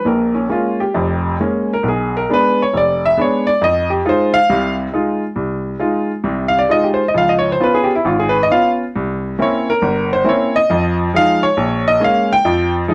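A clear, natural baby grand piano sits up front in this smoky, cool solo jazz passage of 12.9 seconds, cut from a longer piece, its swung eighths and loose rubato moving through minor-key changes such as Bbm7, Bdim7, Fm7, Db7 and C7b9 across a range from deep bass notes to the upper middle of the keyboard, all set in a light reverb.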